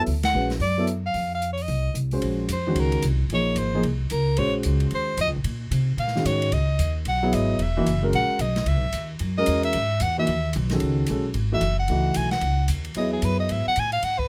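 Close, detailed microphones and little reverb give this short modal jazz clip a dry, intimate sound. It moves at a brisk 223 BPM in 4/4 with a light swing, opening with a band accent before settling into a hypnotic, searching mood that reaches C# minor at 10.8 seconds. A breathy soprano saxophone sits up front, taking a solo from 2.2 seconds with a whispered, soft-attacked tone, vibrato and scooped notes. Beneath it, a dark concert grand piano supplies mellow accompaniment with a deep low end, while a woody, plucked upright bass anchors the harmony through modal minor eleventh chords. The acoustic drum kit, airy and polished with dark cymbals and a boomy kick, sits further back in the mix.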